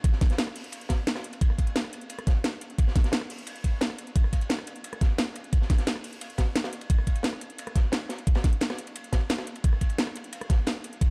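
A dark, dry production carries this tense drum and bass excerpt, where an up-front knocking electronic kick and a layered electronic kit with cracking snare, metallic hi-hats and rim clicks sit over a quieter, gritty, saturated acoustic garage kit with a pumping small room, ride cymbal and a filtered, rolled-off top, the kick briefly dropping out from 9.3 to 9.6 seconds.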